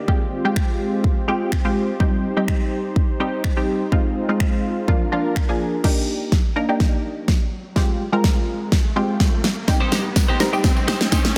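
A straight 4/4 dance-pop groove drives this euphoric, summery clip, built on an electronic, layered pop drum kit up front, with a punchy kick, a fat snare with soft clipping, hi-hat, finger snaps and crash cymbal. Full-bodied chord stabs sit just as forward: detuned sawtooth filter plucks with a fast attack and decaying tail, colored by chorus and phaser and pumping against the sidechain. Beneath them, a warm analog pad of smooth, slow-attack sawtooth chords with chorus and the same pumping moves through Fmadd9, Cm, Ab6 and Bb, then drops out at 5.8 s as a build-up begins on Ebmaj7 with a drum fill, and a background riser enters at 7.2 s. At 9.7 s a clean, picked twelve-string electric guitar riff arrives, compressed and shimmering with analog chorus, joined by a jingly, bright tambourine that stays close, dry and in the background. Light reverb and a dense, heavily limited modern master keep the short cut from a longer piece sounding tight and glossy.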